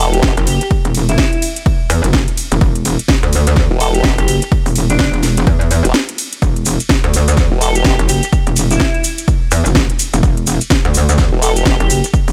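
Swaggering and gritty, this bass house excerpt moves at 126 BPM in E minor with a swung sixteenth feel, driven by an up-front metallic wobble bass with tube saturation and sidechain pumping, while a formant-sweep wobble bass appears in bursts at the very start, from 3.7 to 8.0 seconds, and again near the end. A punchy overdriven kick and a house kit with cracking snare, metallic hats and ride cymbal sit in a large room, with a break at 5.9 seconds before a grainy, vintage cabasa enters in the background at 6.4 seconds. Floating above, an airy, dreamy lead of detuned unison sines with a noise layer, vibrato, chorus and delay carries the melody.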